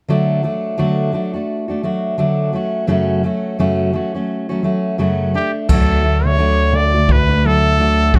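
A relaxed 86 BPM pulse in 4/4, with a light swing on the sixteenths, carries this sunny, carefree acoustic pop clip in D major. A fingerpicked steel-string acoustic guitar opens alone, full-bodied and up front with the sound of fresh strings, moving from D to F#m. At 5.4 seconds a bright trumpet takes the melody in a pop-style solo, with light vibrato and scooped notes. At 5.7 seconds a clean, bell-like tine electric piano enters to play the bass line, sitting direct and up front. A jazz kit played with brushes joins at the same moment, adding a boomy kick and crash cymbal that sound distant and roomy with a rolled-off top. A moderate studio reverb gives the whole blend a natural sense of space.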